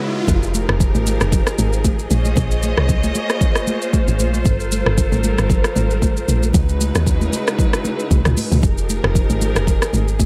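A lush, bowed string ensemble with vibrato and portamento opens this hypnotic, soulful amapiano fragment before the drop at 0.3 seconds brings in a deep, round, percussive log drum bass and an up-front electronic deep house kit of deep kick, smooth hats, rim click, shaker and toms, while bright, damped, high-tuned congas sit in the background and the dry mix drifts through Fm11, Bbm11, Gm11 and Dbm11 chords.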